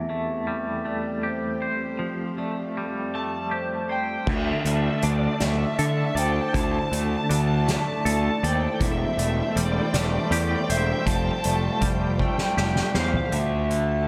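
A round, fuzz-soaked picked bass pushes to the front of this brooding, cinematic post-rock passage in a slow 6/8, arriving at 4.3 seconds alongside a distant, roomy soft-mallet drum kit with dark cymbals and a punchy kick that plays a fill at 12.2 seconds. Beneath them, a twangy clean electric guitar with tremolo and delay arpeggiates over lush, woody sul tasto strings, while a ringing vibraphone with the motor off sits in the background. From 3.2 seconds, an overdriven lead guitar through a small cranked amp carries the melody, all of it bathed in a dreamy plate reverb.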